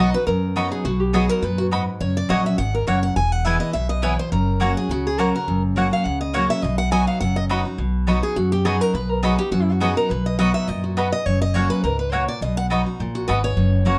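Joyful and virtuosic, this bluegrass excerpt races along at 208 BPM in 4/4 with a light swing, set in B major and cut from a longer piece. A boxy, parlour-bodied steel-string acoustic guitar carries the melody up front, and from 7.8 seconds it takes a solo as the music moves into a new section. Beneath it, a second picked steel-string guitar, a full-bodied dreadnought with fresh strings, supplies the accompaniment across the low and middle range. A bright mandolin, its doubled strings sounding woody and close, adds stabs throughout, while a thumpy, pizzicato upright bass anchors the bottom with a dark, up-front tone. The harmony moves mainly between B, F# and E, and the whole band sits in a light reverb.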